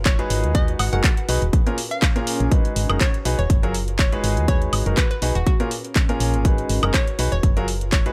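A swung 122 BPM groove, built on a punchy, up-front electronic kick and a tape-warm house kit of handclaps, hi-hat and woodblock, drives this energetic, soulful piano house excerpt in G# dorian, where a polished grand piano riff and a round, dark FM bass both pump with the sidechain, a hollow, bouncy square-wave pluck carries the melody through chorus and digital delay, and a faint, warbling lo-fi pad glows underneath as the chords cycle through G#m7, A#m7 and F#maj9 in a dry, close-sounding mix.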